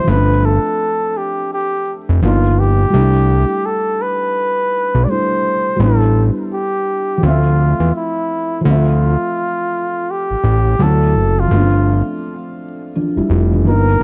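Lo-fi hip hop at 84 BPM in D dorian with a swung 16th-note feel, melancholic and hazy, in which a breathy flugelhorn with vibrato carries the jazz-style melody up front through plate reverb and analog delay over a soft, felt-muted upright piano with audible action noise and a cassette-tape sheen, while a fat, saturated analog bass joins at 0.1 seconds, in a dark production with vinyl crackle and chords drifting from G9sus4 through C69 to Dm9 in this short cut from a longer piece.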